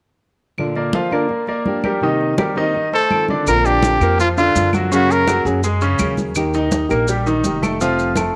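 A close-miked trumpet with vibrato and scooped notes carries a brief solo melody from 2.9 to 5.5 seconds in this sunny, relaxed Cuban son and guajira piece, while a brilliant grand piano with audible action noise spins arpeggios up front, a thumb-plucked classical nylon-string guitar provides accompaniment, woody claves and bright, damped congas sit in the background, and a dark, thumpy pizzicato upright bass joins grainy maracas at 3.5 seconds, the whole cut from a longer piece and heard in a small room with moderate echo-chamber reverb.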